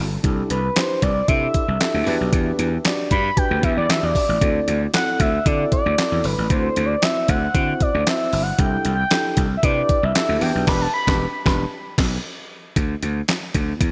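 A smooth, vibrato-laden sawtooth synth lead with chorus sings its expressive solo over a mellow tine electric piano and a growly, punchy slap bass, joined at 0.2 seconds by a thumpy 12-bit drum machine with handclaps and crash, both bass and drums overdriven and up front, in this danceable, funky early-eighties boogie funk cut bathed in moderate, lush hall reverb and bright digital sheen, where a band accent hits at 10.7 seconds before the lead and piano drop out, leaving bass and drums to carry on until 13.9 seconds.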